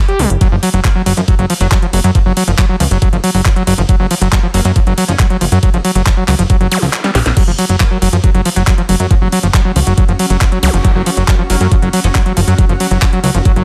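A squelchy, gritty acid bass riff leads this driving, intense psychedelic trance excerpt, its distorted sawtooth tone pumping against the beat and trailing a digital delay. Beneath it, a punchy, funky analog bass plucks low and up front, while a knocking, tape-tinged electronic kick sits prominently in a small room. A layered garage kit adds a cracking snare, metallic hi-hats, ride, crash and handclaps, and a very quiet, juicy blip pluck with a phaser flickers softly as a second line. The kick drops out at 6.9 seconds, and a drum fill from 7.0 seconds leads back into the repeated drop, with brief electronic zaps scattered in the background. From 9.1 seconds a cloudy, blurred granular pad with slow attack and its own reverb drifts in behind the dense, heavily limited mix.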